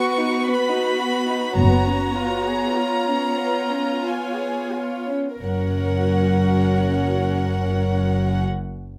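Sul tasto violins with soft vibrato carry a lyrical high melody over a second violin line and gently bowed violas in this intimate, warm fragment of a slow romantic movement for string orchestra, moving in a rubato three-time that slows through its first 5.4 seconds. At 1.6 seconds a dark, smooth-topped double bass section and a pure, floating cello section enter, each holding a single low note, the cellos sounding more distant than the close, up-front upper strings. The recording is dry and detailed, and the harmony comes to rest on a new chord at 5.4 seconds.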